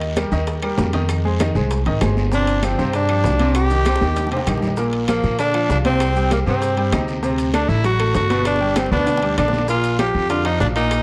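Worn, warbling cassette tape with a moderate spring reverb gives this fiery, danceable salsa cut from a longer piece a vintage sheen, moving at a straight 196 BPM in 4/4. A brilliant upright piano comps through chords from Ebadd9 and Fm9 toward D7 and G, over a growly pizzicato upright bass up front, while ringing congas and timbales, tight high-tuned bongos, quiet woody claves, and distant guiro and grainy maracas fill out the percussion bed, with drum fills at 3.9 and 8.5 seconds. At 2.3 seconds a raspy, gritty tenor saxophone takes the solo melody up front, its vibrato trailed by tape echo.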